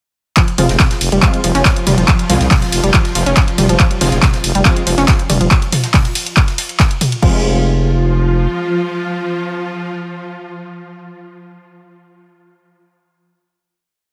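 Hypnotic and intense, this complete piece of driving peak-time techno in F minor at 140 BPM drops in at 0.4 s with a punchy, tape-warm electronic kick up front, a punchy analog drum machine of hats, ride, toms, clap and crash, a very quiet jazz brush kit looping an edited breakbeat, and a round, detuned analog pluck repeating a 16-step sequence through chorus, cassette tape and tape echo. At 0.6 s a growling, thick FM bass joins, galloping in sixteenths, along with bright, aggressive rave stabs echoing sparsely in the background. At 1.0 s a swarming, granular sine drone enters and hangs on with the stabs into a final chord from 7.2 s to 10.7 s, all under light reverb.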